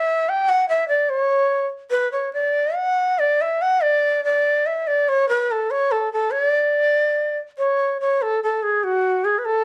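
Mexican folk in D major, this proud, romantic fragment from a longer piece moves in a rubato 3/4 around 144 BPM, carried entirely by a solo shakuhachi whose breathy, bright, reedy straight tone sits up front with tongued notes between F#4 and G5 across all 9.6 seconds, set in a moderate studio reverb and coloured by worn cassette tape with warbling pitch drift and vinyl crackle.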